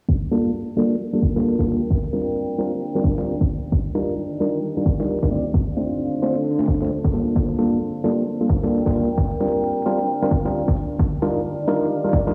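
A punchy, tape-colored electronic kick opens this soulful, late-night two-step garage cut at 0.1 s, sitting up front at 132 BPM in 4/4 with a 16th-note swing, while a filter sweep runs through the whole 12-second passage. By 0.3 s a hollow, percussive organ stab joins up front, its dark, fast-attack, decaying hits treated with chorus, cassette tape color and digital delay, alongside a faint electronic hi-hat tucked in the background. At 1.0 s a deep, moody ambient pad rises slowly underneath, its detuned sawtooth unison and sub octave warbling with vintage chorus and built-in reverb as sidechain pumping makes it breathe. The harmony in G minor moves through lush extended chords, Gm9 to Bb69 to Ebmaj9 and back again. The mix sounds as though it is played on a big sound system in a bare room, with plate and large studio reverb, small room ambience and a low-pass filter softening the top end.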